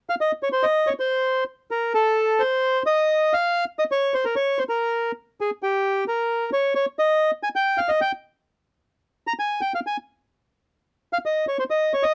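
A solo bandoneon, reedy and dark yet smooth, sits up front throughout this brief tango fragment, playing from 0.1 to 12.1 seconds in a range from G4 to Bb5. The mood is passionate and sultry, with a rubato feel around 131 BPM in 4/4. The sound is dry and close, like a 1970s studio recording with little reverb, and the passage is cut from a longer piece.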